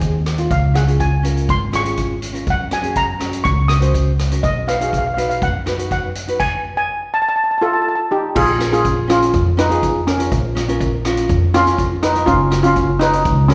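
Carefree and bouncy, this calypso excerpt moves at 122 BPM in a straight 4/4 feel in Db major, cut from a longer piece. A metallic, shimmering steel pan carries the lead melody from 0.5 seconds, played with medium rubber sticks and sitting up front with a slapback echo. Underneath, a dark, full-bodied nylon-string guitar fingerpicks a deep classical accompaniment, also touched with slapback echo, while a woody upright bass with steel strings plays pizzicato. A street-band drum kit with a boomy kick, rolled-off top, hi-hat, rim click and crash cymbal sits mid-forward in a studio room sound. The harmony moves from Db through Gb and Cb, breaks briefly at 6.4 seconds before an F7, and opens a second section at 8.4 seconds on Bbm7, all heard as a live gig through the venue's PA with recital hall reverb.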